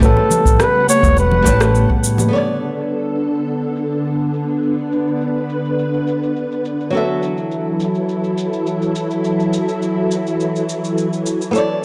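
A straight 4/4 groove at 104 BPM in B minor opens this smooth, relaxed sunset chillout fragment, with a deep, dry electronic kick drum, overdriven and filtered electronic cabasa and rim click, and a woody, thumpy pizzicato upright bass with tube saturation, while bright compressed bongos and congas join in the background a moment later. Up front, a breathy, close-miked flugelhorn plays a jazz-style solo with scooped notes through analog delay, while fingerpicked flamenco guitar with 12-bit sampler grit and a filter sweep rides over a silky, slowly evolving string machine with ensemble chorus, moving through A13, Bm9 and F#m7. The kick and flugelhorn stop at 2.0 seconds and the bass and hand drums at 2.3 seconds, leaving guitar, strings and a filter-swept drum part in a gritty, transformer-saturated small room with light reverb.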